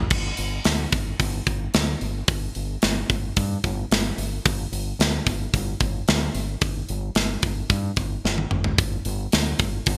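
A growling, fingered electric bass opens this hard rock excerpt, its overdriven, punchy tone sitting low between G1 and G2. An instant later, at 0.1 seconds, a tight metal drum kit joins and stays up front, with a medium-tuned snare, a tight kick, hi-hat, crash cymbal and toms. Gated reverb shapes the drums' studio-room sound, while the bass keeps a direct, amped edge beneath them. The mood is aggressive and heavy in a straight 4/4, and a drum fill cuts through from 8.3 to 8.8 seconds before the cut ends at 10.0 seconds. The whole thing carries a bright 1980s-style digital sheen with a light touch of room reverb.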